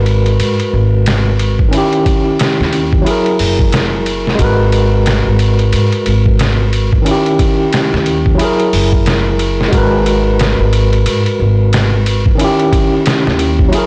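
A 4/4 groove with sixteenths swung at 60% drives this smoky, hypnotic trip hop excerpt, cut from a longer piece. The sampler-style drum kit, arriving at 0.1 seconds, sits up front with a compressed, pitched-down and muffled character: a thumpy kick, a medium-tuned snare, hi-hat and ride cymbal, all re-recorded in a small room. Underneath, a plucked upright bass with steel strings gives a woody, tube-saturated low end. An overdriven tine electric piano, also up front, carries the accompaniment with a bright, barky, gritty tone through a combo amp, colored by tremolo and tape echo. Its chords cycle through G#m9, D#7b9 and F#9, while the whole recording is blown-out and overdriven, dusted with vinyl crackle and a light reverb.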